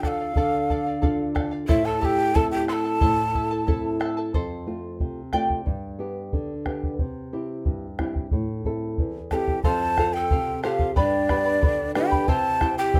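Melancholic and earthy, this fragment of a longer Andean folk piece moves in a straight two-beat metre over a minor-leaning chord cycle. A close-miked, end-blown wooden quena carries the melody up front, soft in attack, slightly unsteady and touched with vibrato. Hollow cane pan pipes follow beneath it as a second line, tongued with an audible chiff. Both winds drop out at 4.0 seconds, and the fingerpicked charango takes a shimmering solo from 4.3 seconds, its double strings bright against the accompaniment. The winds return at 9.3 seconds, while a dark, thumb-plucked flamenco guitar and a round bombo sound throughout. Small-room reverb and a rough home-demo mix give the ensemble an intimate, unpolished feel.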